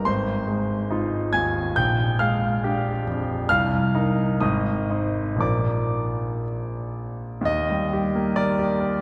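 Romantic classical character piece for solo piano, heard as a short excerpt cut from a longer work, with a warm, hopeful mood. It moves in 2/4 at a flexible 57-73 BPM, the rubato letting the pulse breathe freely in E-flat major. The concert grand carries everything alone across the full 9.0 seconds, reaching from deep bass up to a high register, with a polished, intimate tone and long sustain. It sits up front and present, close enough that the noise of its action is audible. The harmony drifts through Fm7/Ab, Bb6, Cm7, Ab and Bb before settling on E-flat at 7.5 s, where a new section begins. A generous church reverb and a dark, warm production wrap the instrument in a glowing, spacious halo.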